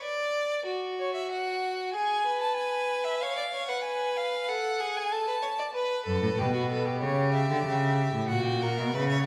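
In a straight 4/4 pulse, this solemn yet driving baroque-style fugue for string quartet, cut from a longer piece, opens with a clear, focused bowed violin on the second line, joined at 1.0 seconds by a rich, smooth violin with vibrato carrying the melody, before a bowed cello takes up the bass at 6.1 seconds, the trio sounding in a moderate concert hall reverb.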